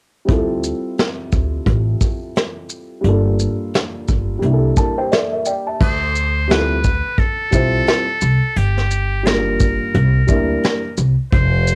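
This home cassette recording has a lightly reverberant sound and a smoky, mellow mood, a jazz-hop groove cut from a longer piece with a swung sixteenth-note feel. A vintage brush drum kit sits up front in a small room, with dark cymbals, a tight kick, a medium-tuned snare, shaker and a tape-softened, rolled-off top. Beside it, a pizzicato upright bass with steel strings sounds woody and growly. A dark upright piano, boxy and long-sustaining behind cassette tape and plate reverb, carries the accompaniment through Dm11, Gm7 and C13 chords and plays a fill at 4.4 seconds. At 5.8 seconds a trumpet with a metal mute enters on the melody, buzzy, thin and breathy, with a soft attack and an intimate, whispered jazz delivery. The piano drops out at 10.8 seconds, leaving the trumpet, bass and drums to finish.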